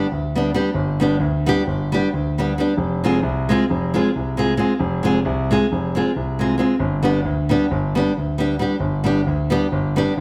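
A bright, fingerpicked nylon-string guitar with fresh strings opens this restless, virtuosic Balkan wedding-band folk excerpt in a straight 9/8 at 268 BPM (eighths), tuned to A4 = 441 Hz, joined at 0.1 seconds by a concert grand piano holding down deep, open bass notes as both sit up front in light reverb over a G to F minor and back to G progression.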